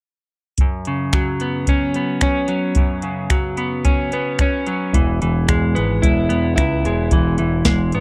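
A soft vintage rhythm box of deep kick, crisp snare, metallic hi-hat and finger snaps opens this wistful, jangly indie rock excerpt alongside a dark, double-tracked overdriven electric guitar riff moving from F#sus4 to E, with a growling, overdriven picked bass entering at 4.9 seconds, all captured dry and close in a 1970s-style studio sound.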